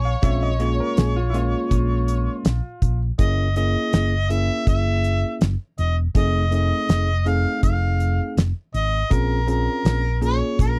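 A straight-eighth soul blues groove in 4/4 carries this mournful, soulful excerpt, where a mellow, vibrato-laden harmonica with overdrive sings the melody from a distant, roomy place, a woody, slightly detuned upright piano with audible action noise adds a brief second line until 3.0 seconds, a bell-like tine electric piano with subtle chorus supplies clean accompaniment, a dark, round hollow-body electric bass sits up front, and a damped 1970s drum kit with a fat snare and tight kick drives the dry, close studio sound through a Bbm7, Gb7, F7#9 progression.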